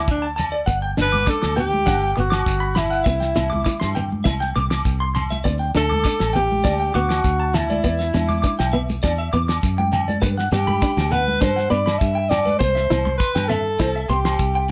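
Highlife guitar band music with a warm, carefree mood and a straight 4/4 groove, cut from a longer piece. A vibrato-laden alto saxophone carries the melody up front, its pop-style tone sounding distant and roomy, while a fingered electric bass holds down the low end with a dark, round, foam-muted sound. A damped 70s drum kit gives a dry, fat snare and tight kick with a rolled-off top, joined by grainy, band-limited shekere, high-tuned congas played with soft hands, and ringing agogo bells set far back in a large room. An electric guitar through a small old amp plays picked, compressed arpeggios, slightly broken-up and bathed in lush chorus, and a thumb-plucked flamenco guitar adds acoustic accompaniment from 0.7 seconds. The harmony moves through Gmaj7, C, Dsus4 and an E7 with its third omitted before settling back on G and C, all under a light reverb.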